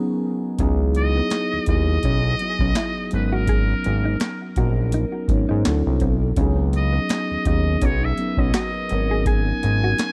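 A lightly swung 4/4 neo-soul groove opens with a brief band accent of mellow tine electric piano, treated with phaser and tape echo, over a faint shimmering pulse-width pad, before a booming analog drum machine with deep kick, crisp snare and metallic hats, a fat, saturated sawtooth bass up front, and a dark, clean electric guitar in the background arrive at 0.6 seconds, with a buzzy, vintage muted trumpet taking the sultry late-night melody from 1.0 seconds over minor-eleventh and ninth chords in an echo-heavy digital ambience.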